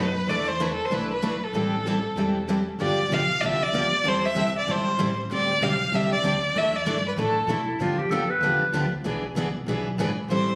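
A bittersweet, swinging excerpt of acoustic string swing at 192 BPM opens with a bowed violin carrying the melody with vibrato and portamento over a bright, full-bodied picked steel-string guitar, a boxy parlour guitar in the background and a woody, thumpy pizzicato upright bass on gut strings, until a clear, roomy clarinet adds a scooped jazz second line from 7.5 to 8.9 seconds, all heard through moderate studio reverb on a phone recording made in the room.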